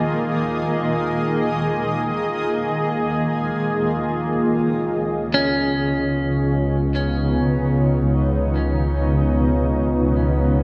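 The music drifts in free time, an ambient passage in Db mixolydian with a weightless, warm mood, cut from a longer piece. A cloudy, evolving granular pad holds sustained chords from the very start, its slow attack and long release blurring the harmony up front in its own reverb. At 4.3 seconds a dark, bowed double bass section enters on a low Db, its nasal, reedy gut-string tone carrying light vibrato and a smooth top. Between 5.3 and 7.9 seconds a clean, picked electric guitar adds brief compressed arpeggios, trailed by analog delay. A spring reverb with a 2.8-second tail bathes the echo-heavy mix, and the chords move from Eb5 to Db7 as the bass arrives.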